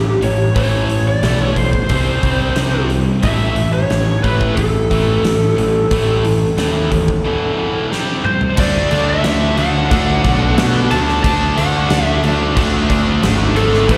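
Heard as a live gig through the venue's PA with recital-hall reverb, this powerful, swaggering hard rock excerpt pairs a dark, overdriven lead guitar through a small cranked amp, carrying the melody with slapback echo and analog delay, with a round, punchy fuzz bass up front, a huge arena drum kit with a fat snare, punchy kick and bright cymbals whose fill at 7.9 seconds leads into a new section, and two background riff guitars, one overdriven and one scooped and high-gain, joined at 8.6 seconds by a very quiet, double-tracked third.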